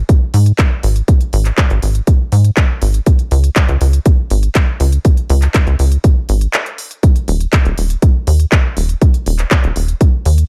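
Progressive house with an emotional, driving mood, cut from a longer piece and built on a tight, up-front sequencer bass whose sawtooth, square and sine layers are wave-folded into a filter pluck with a moving notch, fast attack and decay, pumping against the sidechain. A punchy, layered electronic kick sits up front in studio reverb, while a quieter house kit adds handclaps and crisp hi-hats in the same reverb over a digital ambience. A brief break arrives at 6.5 seconds before the groove resumes at 7.0 seconds.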